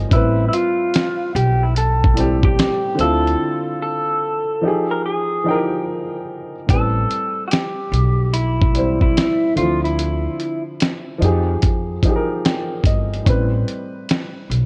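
A slightly broken-up electric guitar through a small old amp carries the melody with phaser until 10.6 seconds, over a dark, mellow upright piano with audible action noise, a woody pizzicato upright bass and a gritty, thumpy sampler-style soul drum kit, in this melancholic, hazy lo-fi hip hop excerpt at 73 BPM in A minor, swung on the sixteenths, moving through Am9, Dm9 and Fm9 with a break from 3.4 to 6.7 seconds, all wrapped in worn, warbling old tape and light reverb.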